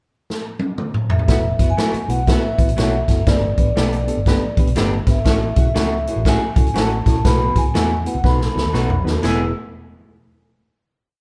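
A swinging big-band drum kit kicks off this short, joyful 1960s-style soul piece with a fill at 0.3 seconds, then drives an uptempo 121 BPM beat in E major, its snare hitting on all four beats over a boomy kick and a natural, big-room sound. A dark, foam-muted fingered electric bass plays a round, syncopated line with chromatic approach notes, while a reedy, lightly overdriven electric piano sits in the background with close-voiced eighth-note chords. A lo-fi, slightly broken-up electric guitar through a small old amp adds short chops on the backbeat, and an edgy, close-miked saxophone section plays short ensemble stabs. Over the top, a vibraphone with soft mallets carries a mellow, airy melody of call phrases with a slow motor vibrato. A raspy, gritty baritone saxophone slips in very quietly at 5.3 seconds with low punctuation, before the band, caught live in one room with light reverb, lands on a final E chord at 9.2 seconds.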